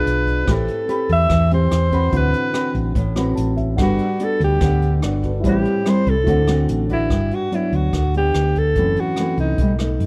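The recording is dark and close, with a dry, intimate sound in this short cut from a longer bossa nova. The mood is sophisticated and sunny, moving through jazz chords such as Am9, D13 and Gmaj7 before reaching F#m7b5 near the end. A breathy alto saxophone sits up front and takes a smooth-topped solo with vibrato until 7.1 seconds. A fresh-stringed, thumb-plucked nylon-string guitar and a round, amped hollow-body electric bass carry the accompaniment throughout. A mellow baby grand piano stays in the background, its action noise audible, adding a brief fill at 3.2 seconds and stopping at 7.1 seconds. Brushes on a natural-sounding studio kit give hi-hat and rim clicks over a boomy kick.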